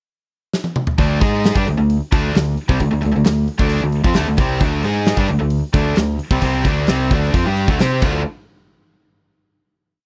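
A fat-snared, punchy-kicked rock drum kit sits up front with a drum fill at 0.5 seconds, then drives a swaggering classic rock riff in D minor at 132 BPM from 1.0 seconds, as a growling, overdriven fingered bass doubles the picked power-chord riff of a biting overdriven guitar and a cranked stack guitar in the background, all captured in a dry, close 1970s-style studio sound before the final hit at 8.3 seconds.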